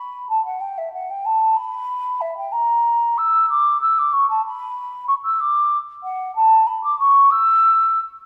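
In a rubato 6/8 lilt at about 63 beats per minute, counted in dotted quarters, this baroque-style classical fantasia in B minor unfolds with a flowing, solemn mood. An unaccompanied concert flute carries the whole passage, its hollow, pure straight tone and tongued notes sitting up front between E5 and E6 until about 8.0 seconds. A moderate recital hall reverb of around 1.7 seconds surrounds the line, which is cut from a longer piece.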